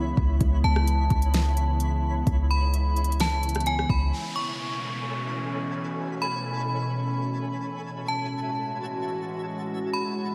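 This atmospheric cloud-rap excerpt sits at 129 BPM in 4/4 with a half-time feel, its smooth R&B drum kit of soft kick, fat snare, rim click and smooth hi-hats running from 0.2 to 4.0 seconds. Beneath it, a deep, boomy 808-style bass holds C#2 up front until 4.1 seconds, its sine tone carrying a noise layer and a fast, decaying attack. A glassy, ethereal FM pad sustains chords through the whole passage with ensemble chorus, built-in reverb and sidechain pumping, moving from C#m7 to Amaj9 at 4.1 seconds and F#m9 at 7.8 seconds. Above it, a metallic, inharmonic FM bell rings out a bright melody between G#5 and C#6, treated with chorus and digital delay, while a faint granular texture twinkles with octave-up shimmer and its own reverb. Once the drums and bass drop out, an electronic downlifter and swell fills the second half, leaving a spacious, hazy mood in a light reverb.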